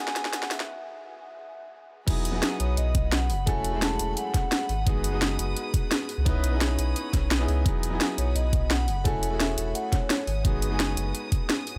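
Lush and uplifting, this liquid drum and bass passage, cut from a longer piece, opens with a build-up: a short drum fill gives way to a break under a filter sweep. Above it, a bright, brilliant grand piano plays accompaniment, a ringing, metallic vibraphone carries the melody with medium mallets and the motor off, and an intimate chamber string section bows rich, soft-edged sul tasto chords with light vibrato in the background. A deep, round sine sub bass with tube saturation enters early and sits up front, and at the drop at 2.1 seconds a knocking, overdriven electronic kick joins in. The layered, produced drum kit is also up front, pairing a cracking snare with gleaming hi-hats and crash cymbal, overdriven and re-recorded in a small room, with high-pass filtering on the hats, snare, cymbals and room. Piano and vibraphone both trail dub echo while the strings pump from sidechain compression, and the vibraphone falls silent for a stretch before returning at 8.2 seconds, all set within a high-passed digital ambience.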